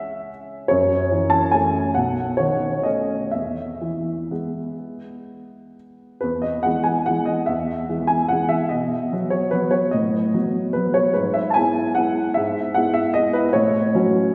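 A solo upright piano opens at once, its woody, natural tone placed up front as it sets a sparkling, playful classical waltz in E major. The piece moves in 3/4 with a flexible rubato feel, the tempo drifting between 120 and 156 BPM. The piano spans from B1 up to A5, and its warm sound blooms into a wet church reverb that gives the passage a spacious, resonant setting. The harmony starts on C#m and moves through F#m7 and B9 before settling on E, and the opening phrase returns at 6.2 seconds. This second pass leans on B and B7/A before reaching E/G# and arriving on F#m/A at 13.6 seconds, and this short passage, cut from a longer piece, ends at 14.3 seconds.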